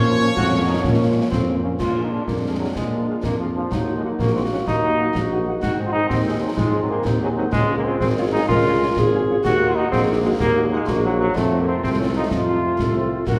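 This resolute, martial wind-band march in Bb minor opens with the full band at once: a clear euphonium sits up front on a second line over a mellow, punchy tuba bass, while a distant, roomy trumpet section carries the melody in the background, a hollow piccolo touches a single Db6 only until 1.3 s, and a mellow woodwind section, a dark, very quiet French horn section and a bright, tight, very quiet trombone section fill in beneath. Concert snare drum, concert bass drum and dark clash cymbals join at 0.4 s, driving the 6/8 metre at 126 BPM in dotted quarters as the chords move from Bbm through Bb7, Ebm, Ab and Db to F. The band is heard from further back in a wet scoring stage, giving this cut from a longer piece a spacious, ceremonial sound.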